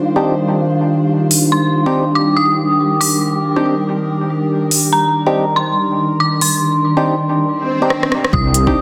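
Swung, half-time sixteenths carry this cavernous, dark deep dubstep excerpt, where a resonant, overtone-sweeping drone and a breathy, wind-like tuned noise texture sustain a single minor chord beneath hollow, wave-folded organ stabs soaked in phaser and dub echo; a deep house drum kit of smooth hi-hats and rim clicks enters at 1.3 s, joined at 1.5 s by an eerie, inharmonic FM synth bell melody floating high above, and an electronic swell and drum fill lead at 8.3 s into a rumbling, detuned saw bass and a layered electronic kick, the whole excerpt set in a wet echo-chamber reverb and a dense, heavily limited master.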